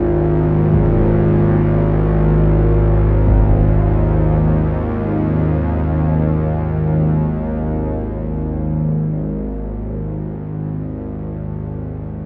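Light reverb and a small room's ambience frame this desolate, cavernous dark ambient drone in free time, cut from a longer piece. Up front, a tense, string-like bowed drone holds low and sustained, its sawtooth edge roughened by a noise layer and ring modulation, with vibrato and its own built-in reverb. In the background, a bright, pure quartz singing bowl, sounded with a wooden striker, rings meditative arpeggios with delay and slow beating until 3.5 seconds, while huge, dark, low-pass-filtered impacts enter at 0.7 seconds, before the drone carries on alone and fades out from 7.5 seconds.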